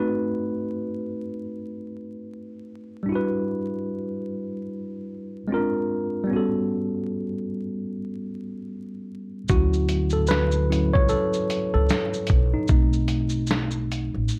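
Cosy and nostalgic, this lo-fi hip hop clip in D major moves at 75 BPM with a 16th-note swing, opening on a worn, slightly out-of-tune tine electric piano softened by a low-pass filter over chords such as B7b9, Em9 and A13, until at 9.5 s a woody pizzicato upright bass and a muffled, compressed sampler-style drum kit with a thumpy kick, hi-hat, shaker and snare enter as the piano takes a solo, all set in light reverb, vinyl crackle and a dark, warm production.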